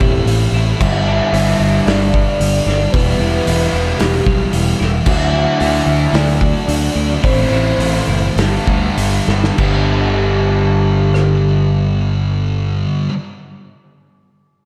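A straight 4/4 pulse on a loose indie kit, with a punchy kick, medium-tuned snare, rim clicks, hi-hat, dark crash and a pumping room sound, drives this hazy, wistful slice of shoegaze and dream pop rock, slowing from 5.1 seconds into a drum fill that leads to a new section at 9.6 seconds, after which the kit drops out at 11.3 seconds. Underneath, a growling fingered bass sits up front with bright, overdriven grit, while a thick fuzz guitar, also up front, churns a riff thickened by analog chorus. A crunchy overdriven guitar plays its own riff further back, bathed in reverse reverb, and a twangy, compressed twelve-string electric adds very quiet, bright arpeggios. On top floats a soft, round synth lead layered in octaves, a dark blend of triangle, sawtooth and sine with a sub octave, its sustained melody shimmering with chorus, tremolo, vibrato and delay. The chords drift from Am through G, Em and Dadd9, then back to Am before settling on Gadd9, and the whole mix is soaked in lush hall reverb for a dreamy, warm haze.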